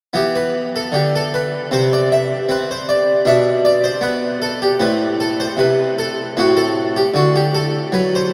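Classical, baroque-style suite movement for solo harpsichord in E minor at 77 BPM with a rubato feel, solemn and introspective, its airy, plucked Italian-style tone full with two sets of strings and up front, ranging from A2 to E5 through chords of Bmadd11, Am and F#dim/A, and bathed in a huge reverb that places this short excerpt from a longer piece in a vast, echoing space.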